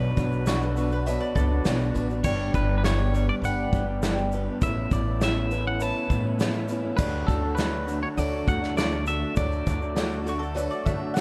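A twangy electric guitar carries the melody through tape echo from the start, over a boxy, picked swing-style acoustic guitar, a slightly broken-up riff from an electric guitar through a small old amp, a woody, thumpy upright bass up front, and a very quiet, shimmering musette accordion holding reedy sustained chords. At 0.2 seconds a soft brush drum kit with dark cymbals settles in at a distance, along with a grainy egg shaker in the background, while a round, double-strung mandolin adds a brief echoed second line at 0.5 seconds and returns at 10.3 seconds. This jangly, mid-paced snippet of folk rock and heartland rock moves from Bm to G, Aadd9 and D, with a dark, warm production and small room ambience.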